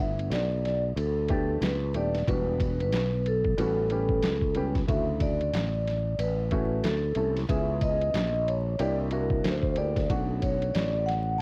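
A swung sixteenth-note groove at 92 BPM in 4/4, with swing set at 59%, carries this mellow, smoky jazz-hop fragment cut from a longer hip hop piece, tuned to A4 = 441 Hz. The lo-fi sampler-style drum kit enters at 0.2 seconds with a thumpy kick, medium-tuned snare, hi-hat and ride cymbal, sounding compressed, pitched down and muffled, colored by cassette tape and placed up front. Beneath it, a sustaining fretless electric bass, bright, growly and directly amped, also up front, holds the low end between D#1 and D2. A dark, woody upright piano with audible action noise and an intimate, vintage character plays accompaniment through cassette tape until 10.9 seconds. Above it, a ringing, metallic vibraphone played with medium mallets carries the melody from A4 to A5, its slow motor vibrato and band-limited tone treated with cassette tape and tape echo. The harmony moves from G69 through Em7, A13, Dmaj7, C#m9 and C9 to Bm9, all set in light reverb with vinyl crackle and the feel of a home cassette recording.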